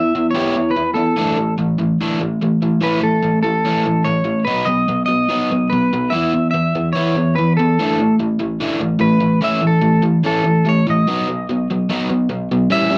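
A crunchy, double-tracked overdriven guitar drives this rock excerpt, its picked riff sitting up front from E3 to G4 for the full 13 seconds. Above it, a twangy electric guitar at the edge of break-up carries the melody between A4 and E5, its fingered lines shimmering with vibrato and a slapback echo. The mood is jangly and wistful, moving at a straight 146 BPM in 4/4. The harmony cycles through Em, Dsus2, A and B, with an E5 power chord taking the place of the opening minor chord on the second pass. Light reverb and a dry, close 1970s-style studio sound keep both guitars immediate.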